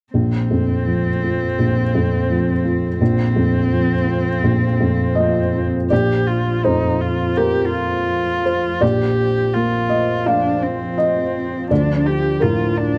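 Tender and intimate, this rubato neoclassical piece for piano and strings opens with a felt-muted upright piano, soft, boxy and up front with short sustain, together with a single close, woody cello bowed sul tasto with vibrato as a second line. From 1.8 s a deep, moody ambient pad of detuned sawtooth and sine tones with a sub octave slips in, sitting in the background, its slow attack and long release blurred by chorus and built-in reverb. The small, dry room gives it a close 1970s studio feel as the harmony rests on Bbsus2 before turning to Dm at 11.7 s in this fragment of a longer work.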